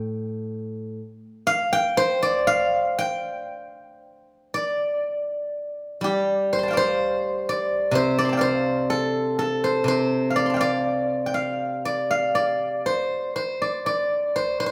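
In a free, rubato 2/4 pulse hovering around 56-64 BPM, this elegant, flowing fragment of Chinese traditional solo plucked-string music sits in the G shang mode, with a steel-string zither alone from start to finish across 14.7 seconds. Played with fingerpicks and placed up front, the zither sounds silvery and ringing as it spans A2 to C6, with a fresh passage opening at 4.0 seconds. A moderate recital hall reverb lends the acoustic tone an airy glow.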